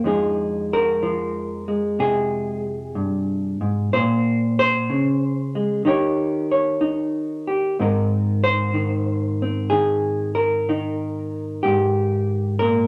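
A dark, clean hollow-body electric guitar, fingered and up front, plays solo jazz with a relaxed, sophisticated mood and a gentle swing feel across the 12.9 seconds of this fragment cut from a longer piece. It moves through Fm7, Bbm9 and Eb7 before settling on Abmaj9 at 7.8 seconds, ranging from low F2 up to Db5. The guitar sits in a wet small room whose short reverb lends an intimate, close-up ambience.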